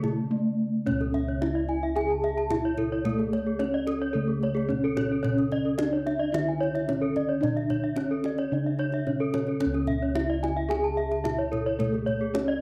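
This fragment of a longer Balinese gamelan piece opens with a brief break from 0.0 to 0.9 seconds before settling into a single hypnotic, brilliant passage that runs to about 12.6 seconds, at 110 BPM in a straight 4/4 and in a C# pelog scale. A bronze metallophone carries the melody in a low-middle range, its padded disc mallets giving a mellow, airy ring, while paired tuning makes it shimmer. Two more bronze metallophones play arpeggios above it: one is struck with a wooden mallet and sounds close-miked and dry, and the other uses a horn mallet and has a boxy small-room character. All three metallophones carry a cassette tape coloring. Dark, round bossed gongs hold down the bass with a beating tone, and a tight kendang played with hard hands keeps the percussion going. The whole home cassette recording sits in a small room with a wet spring reverb.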